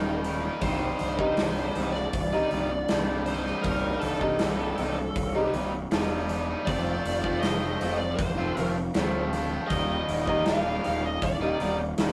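A brooding, angsty stretch of quiet-loud alternative rock in C dorian at 79 BPM opens with a distorted, bluesy lead guitar melody over a picked, compressed overdriven electric guitar riff, a boxy fingerpicked acoustic archtop in the background with audible finger squeak, and a growly, fuzz-laden electric bass sitting up front. A big rock drum kit with a punchy kick and medium-tuned snare joins at 0.2 seconds, its big-room sound placed close, while the chords move from Eb to Cm, then F and back to Eb. The whole cut has the rough feel of a rehearsal-room recording with moderate studio reverb.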